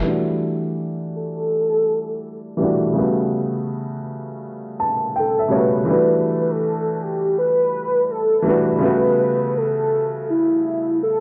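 This hip hop piece moves at 82 BPM in 4/4, with a 16th-note swing that gives it a nostalgic, melancholic lean in E dorian. A woody, vintage-toned upright piano opens the music at 0.0 seconds, playing accompaniment through a low-pass filter over an alternating Em11 and A13 progression. At 1.2 seconds a velvety synth lead enters with the melody, its detuned sawtooth and triangle unison voices sounding sustained, with a fast attack, vibrato, chorus and analog delay. Both parts sit up front, and a filter sweep runs across the whole 11.2-second passage. The dry, gritty hardware recording carries cassette-tape character and a light reverb, and this short passage is cut from a longer piece.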